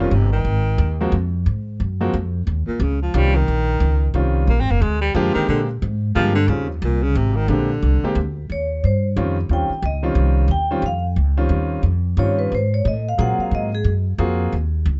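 Warm and relaxed, this swinging jazz waltz opens with a breathy baritone saxophone soloing in a soft, subtoned voice with vibrato and scooped notes, backed by a clear, intimate grand piano whose action noise is audible and a woody, thumpy pizzicato upright bass. At 8.5 seconds a metallic, ringing vibraphone, played with medium mallets and motor vibrato and set in plate reverb, takes over the solo. The whole dark, close-sounding mix carries little room sound, and the fragment is cut from a longer piece.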